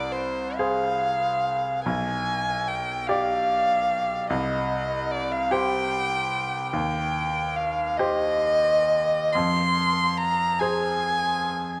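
A close, bowed solo violin sings a solemn, yearning romantic classical melody with vibrato and portamento over a brilliant grand piano accompaniment, whose audible action noise and long sustain sit up front, in a rubato 6/8 fragment from a longer piece bathed in a wet scoring-stage reverb and a dark, warm production.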